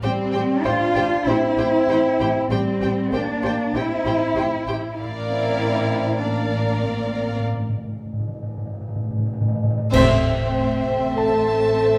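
A dark, tight French horn section holds sustained chords at the centre of this eerie, mysterious suspense film cue at 97 BPM, beneath rich, vibrato-laden chamber violins carrying the melody and a second line, warm bowed violas, cellos and double basses, a very quiet, brilliant grand piano adding texture until 5.0 seconds and again from 11.2 seconds, calf-headed timpani played with medium mallets through a fill from 5.0 seconds, and bright clash cymbals with concert bass drum striking an accent at 9.9 seconds, all in a short excerpt set in a wet recital hall.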